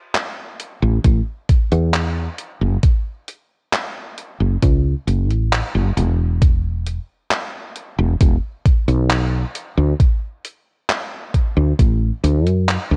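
A detuned 8-bit drum machine opens this dreamy, woozy vaporwave fragment at a slow 67 BPM in A major, its sampler-style handclaps and hi-hat sitting up front with a touch of small-room ambience. A woody fretless electric bass follows at 0.8 s, dark, growly and hollow-bodied, ranging from E1 to F#2, and a thumpy electronic kick drum joins at 1.0 s. The whole recording carries the worn, warbly pitch drift of old cassette tape, with little reverb, lending a hazy, seasick sway to the straight 4/4 groove.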